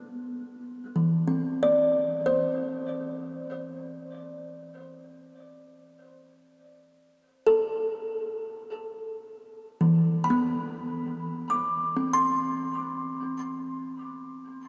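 This ambient piece floats in free time, with a weightless, peaceful mood. A solo kalimba carries the whole passage, its plucked tones woody and hollow, dark yet smooth, sitting up front in the sound. Each thumbnail pluck rings out through a diffuse ambient delay, spanning from E3 up to D6. The harmony drifts from Cadd9/E at 0.2 seconds to A5 at 5.2 seconds, then settles on Cmaj9/E at 10.2 seconds. A wet cathedral reverb places the instrument in a vast, echoing space, and this short passage is cut from a longer piece.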